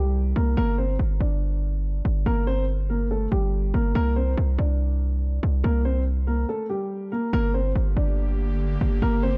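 A small room gives this dark, warm hip hop fragment a tense, ominous air, moving at 142 BPM in a half-time feel in G minor. A boxy, mellow concert grand piano carries the melody up front over a punchy, heavy 808-style bass, and both drop out in a stop at 6.5 seconds. An airy, breathy pad with a detuned, chorused shimmer then enters at 7.8 seconds, holding soft sustained chords beneath them.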